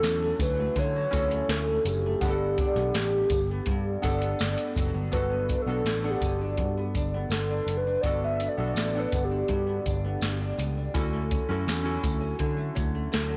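A soft vintage rhythm box sets a steady, straight pulse up front, with a deep kick, crisp snare and metallic hats, while a jingly tambourine sits in the background. This fragment of a longer piece is dreamy, nostalgic bedroom pop, moving between Dmaj7 and Gmaj7 chords. A dark, foam-muted electric bass, round and amped with tube saturation, anchors the low end, and a fingerpicked flamenco guitar adds finger squeak through a lush chorus and wobbly pitch drift. Analog keys blend square, sawtooth and triangle tones with wave folding, a filter sweep and decaying notes, while a detuned, mellow lead carries the melody with vibrato, subtle chorus and tape echo. From 5.1 s a soft synth lead solo joins in, and the whole mix is blown-out and overdriven, set in light reverb and digital ambience.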